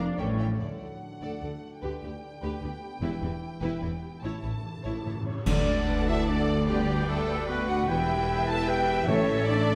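Soaring and adventurous, this heroic cinematic cue moves in a steady three-beat metre, lifted from a longer score. Lush bowed violins with vibrato carry the melody over a second, softer-edged violin line, while rich, even violas fill the accompaniment and distant cellos and double basses anchor the bass. Mellow French horns hold sustained chords throughout, and a very quiet bright harp adds ringing arpeggios beneath. A dark cymbal swell with clash cymbals and concert bass drum rises from 3.0 s, and a close, dry timpani fill from 4.2 s leads into a full-band accent at 5.5 s. Just before it, at 5.3 s, dark trumpets add stabs and an airy, hollow flute takes up a second line. Then the second section opens out at 5.5 s as soft trombones join the sustained chords and a roomy clarinet adds another second line, all set in a moderate scoring-stage reverb.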